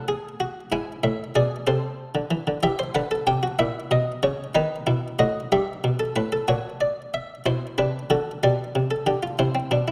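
A buff-stop harpsichord carries this solemn, contemplative fragment alone, its muted, lute-like pluck sounding close and up front. The piece is a baroque-style fugue in three voices, moving in a steady 6/8 with a straight feel and spanning from G2 up to G#5. The instrument has an Italian character, with a full yet dry tone captured in close, detailed miking, while a moderate recital-hall reverb adds a sense of space around it. The harmony wanders through shifting minor and dominant colours, reaching a new section at 6.5 seconds and settling on a C chord near 9.4 seconds. Tuned slightly below standard pitch at A4 = 439 Hz, this brief passage is cut from a longer work and stops at 9.9 seconds.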